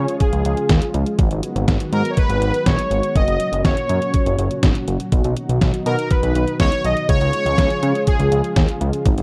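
A bold, brassy analog synth lead carries the melody with chorus, vibrato and slapback echo over a lush, warbling unison pad and a fat, nasal sawtooth bass, joined at 0.1 seconds by a thumpy, sampler-style 8-bit drum machine, in this bright, nostalgic synth-pop passage with a dark, warm production and light reverb, cut from a longer piece.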